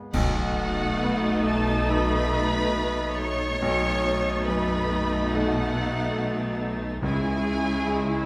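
A lush violin section sings the longing melody with vibrato and portamento in this sorrowful, rubato cinematic film score at 70 BPM. A second violin line, rich violas, a clear baby grand piano, a dark clarinet, a hollow flute section, a mellow cor anglais and distant French horns holding sustained chords fill out the texture, while cellos and a double bass section carry the bass. Dark clash cymbals and concert bass drum mark an accent from 0.1 s, and very quiet, articulate timpani enter at 7.0 s, the whole fragment of a longer piece set in a reverberant scoring-stage space.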